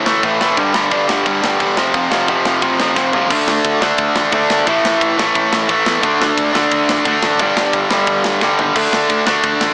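Punk rock at 176 BPM in a straight 4/4, aggressive and raw, cut from a longer piece: a bright, double-tracked distorted guitar sits up front with an overdriven riff moving through A5, G5 and F before shifting to D5 at 3.3 seconds. A growling, punchy picked bass with overdrive stays in the background, while a tight metal drum kit with a medium-tuned snare and rolled-off top works crash, ride, kick, snare and toms, marking fills at 3.0 and 8.4 seconds. The whole mix carries light reverb and a small-speaker sound.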